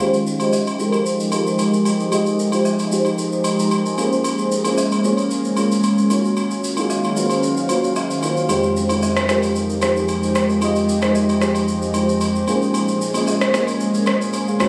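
Late-night and hypnotic, this amapiano excerpt at 113 BPM in F minor drifts over lush, dreamy FM electric piano chords with a soft pad layer, an ethereal airy pad, electronic shaker and rim click, and distant agogo bells and woodblock, all under a filter sweep and moderate stage reverb with a phone-in-the-room quality, while a round, deep analog bass enters at 8.5 s beneath the moving Fm9, Bbm9 and Ebm9 harmony.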